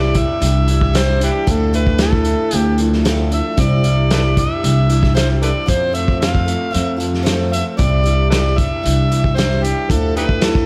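A straight 4/4 pulse at 114 BPM drives this hopeful, open-road slice of folk and heartland rock in C major, with a vintage drum kit entering at 0.1 s, muffled and up front with a tight kick, while a woody, growly upright bass anchors the low end. A gritty, overdriven harmonica carries the melody with light vibrato, tongue slaps and analog delay, over a shimmering, octave-doubled twelve-string acoustic guitar and a dark, slightly broken-up electric guitar riff with subtle chorus, both set in the background. Cadd9 and Dmadd9 alternate, with an F chord arriving midway, all wrapped in light reverb and small room ambience in this excerpt cut from a longer piece.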